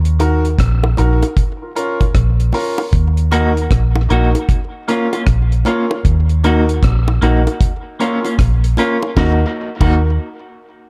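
A round, foam-muted fingered bass anchors this heavy, meditative dub reggae fragment, joined by a dry, dark drum kit with a high-tuned snare and tight kick, bright piano stabs and hard-handed bongos trailing tape echo, and from 3.3 seconds a clean, hollow-body electric guitar with tremolo and echo, all moving between Ebm and Bbm under a dark production with light studio reverb.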